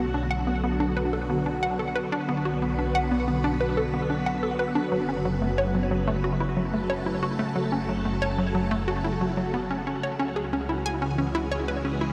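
Drenched in an enormous, eight-second reverb, this expansive, hypnotic fragment of sequencer-driven space music seems to float in a vast, echoing space. A bright, up-front string machine holds sustained chords that swirl through ensemble chorus and phaser, while a hollow, bouncy square-wave pluck, detuned with a noise layer and sub octave, repeats a riff through chorus and analog delay. Beneath them a fat, thick sawtooth bass sits lower in the mix as the harmony shifts from Bm to F#m and then C#m within the 12.1 seconds.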